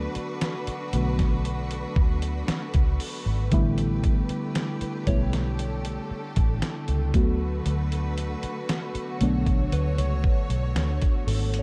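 A slow, straight 4/4 groove sets the pace of this dreamy, romantic contemporary R&B excerpt, carried by a dusty, sampler-style soul drum kit that enters at 0.2 seconds with a thumpy kick, a medium-tuned snare and hi-hat, all gritty, compressed and tape-warm up front. Beneath it, a vintage fingered electric bass sits equally forward, its foam-muted, amped tone round and shadowy. A mellow FM electric piano supplies the accompaniment with soft, full-bodied chords that strike quickly and decay, coloured by chorus and phaser and a noise layer. A lush studio string section holds smooth, even, bowed chords with gentle vibrato, close and rich, as the harmony moves from D6 to A9sus4 and back. At 5.1 seconds a soft, pure synth bell joins in the background, its delicate FM tone shimmering through chorus, phaser and digital delay, all within a dark, warm production bathed in digital ambience.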